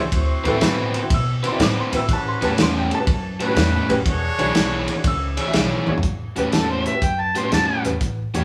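Clear, woody upright piano, loose soft-attack horn stabs that drop out at 4.9 seconds and thumpy pizzicato upright bass open this laid-back, soulful electric blues shuffle, joined by a dark-cymbaled soul drum kit and a bright, crunchy overdriven guitar riff up front, before a gritty amplified harmonica with tongue slaps and scooped notes takes a brief solo at 6.5 seconds, the band playing live in a stone room with moderate reverb.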